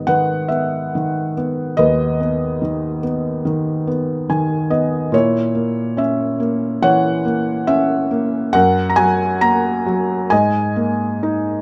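A felt-muted upright piano carries this short classical piece alone, its soft, mellow tone sitting up front and close, as if heard from the bench. The mood is warm and peaceful, a lyrical solo in G# minor at 70 BPM in 4/4, played with a rubato feel that lets the time breathe. The piano spans from D#2 up to A#5, and a brief fill from 3.9 to 5.1 seconds leads into a darker A#dim chord. The harmony then moves through F# before settling on an open G#sus2 near 10.3 seconds, leaving the phrase unresolved as the cut from a longer work ends at 11.6 seconds. Close, detailed microphones and a light reverb keep the sound natural and intimate.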